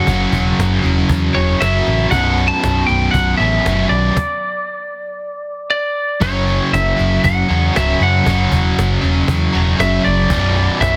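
A straight 4/4 pulse at 117 BPM drives this heavy hard rock excerpt, tuned to A4 = 438 Hz, with a snappy, close cajon played with soft hands and a round, punchy picked bass up front grounding the F#5 and Bm chords. Three picked riff guitars stack up beneath: a biting overdriven one treated with spring reverb, a cranked stack guitar with tremolo further back, and a double-tracked distorted guitar. Above them, a twangy, slightly broken-up, compressed lead guitar carries the melody, and a stop between 4.2 and 6.2 seconds breaks the driving groove before the riff returns in a dense, heavily limited modern master.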